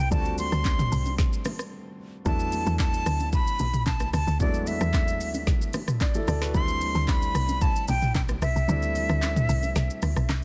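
Soulful and hypnotic, this amapiano excerpt sets a breathy, reedy concert flute melody with vibrato and digital delay over warm grand piano chords, a tight, punchy log drum bass, an up-front electronic deep house kit with a deep kick, woody snare, handclaps, rim clicks, shaker and toms, and soft-handed congas and bongos in the background, pausing for a brief break at 1.7 seconds, adding a piano fill at 5.7 seconds and dropping the kick from 8.7 seconds within a dense, heavily limited small-room mix.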